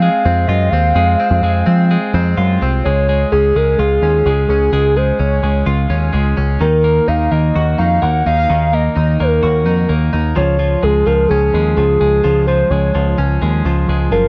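A dry, close 1970s-style studio sound frames this nostalgic, youthful jangly indie pop excerpt at 128 BPM in Db major, where a warbling, wave-folded lead with chorus and vibrato carries the melody over bright, twangy twelve-string electric guitar arpeggios and a deep, round, punchy picked electric bass sitting up front, while the harmony moves from Fm to Db at 2.8 seconds, then through Ebm and back to Db.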